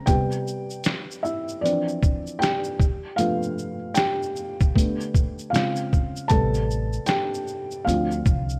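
Hazed by cassette tape and a light reverb, this reflective, melancholic lo-fi hip hop fragment from a longer piece centers on an intimate, dark felt-muted upright piano, up front with audible action noise and short sustain as it drifts from Cmaj7 through a surprising C#maj7, over a compressed, pitched-down, muffled sampler-style trip hop kit of thumpy kick, medium-tuned snare, hi-hat and shaker with a 16th-note swing, until a woody pizzicato upright bass joins at 6.3 s on an Am9.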